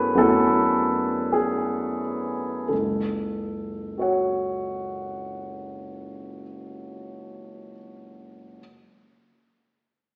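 Wistful and mysterious, this brief fragment of impressionist solo piano drifts in F# minor at a slow 41-56 BPM in 3/4, with a free, rubato feel and tuning at A4 = 442 Hz. A concert grand plays alone throughout, spanning F#1 to F#5, its tone warm and open with a deep bass, long sustain and an up-front presence. The opening phrase rests on an F#m11 chord and slows down before settling onto plain F#m at 2.7 seconds, where a second section begins. A wet recital hall reverb with a 1.5 s decay surrounds the instrument, suggesting a church or concert hall. The recording carries an AM radio character until the fragment breaks off at 8.6 seconds.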